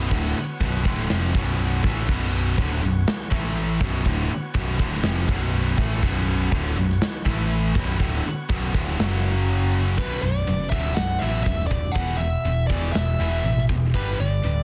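A faint, gritty tonewheel organ with a slow rotary speaker holds sustained chords under two picked, high-gain distorted guitar riffs, one scooped and one set back in the mix, and a growly, punchy electric bass, while a gated 80s drum kit with bright cymbals and a tight kick sits up front in this menacing, driving hard rock cut in B minor at 122 BPM, until the organ stops at 10.0 seconds and a dark, bluesy overdriven lead guitar with analog delay takes the melody over a dense, heavily limited modern master.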